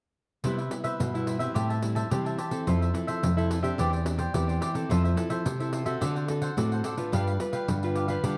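Dark, warm studio production with moderate reverb frames this joyful, sunny samba and choro excerpt at 108 BPM in C major, where an up-front, full-bodied nylon-string guitar fingerpicks the bass line, a second nylon-string guitar with fresh strings fingerpicks classical-style accompaniment, a crisp picked cavaquinho adds accompaniment, and a jingly, close and dry pandeiro supplies percussion from 0.4 to 8.4 seconds through a progression from Cmaj7 to G7.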